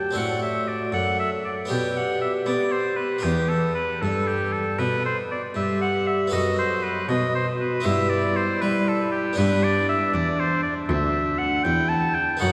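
A bright, up-front oboe and a mellow, hollow tenor recorder with airy chiff open together in this radiant, dance-like baroque-style sonata excerpt in 12/8 with rubato, over a full, plucked Flemish-style harpsichord and a rich, focused bowed cello heard at a distance, all bathed in a wet church reverb with a long 3.8-second decay.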